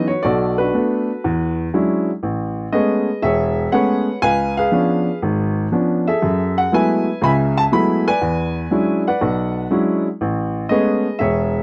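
Solo jazz piano in a cool, late-night mood, moving at 120 BPM in 4/4 with a swung eighth-note feel. A single upright piano carries the whole 11.6-second fragment, cut from a longer piece, reaching from E1 in the bass to B5 at the top. Its tone is woody and natural, placed up front in a dry, close 1970s-style studio sound touched by light reverb. The harmony runs Bm7 to E13 into Amaj9, then C#7b9 and F#m11 before E13 resolves back to Amaj9 at 10.2 seconds. Those rich extended chords give the passage its cool, after-hours glow.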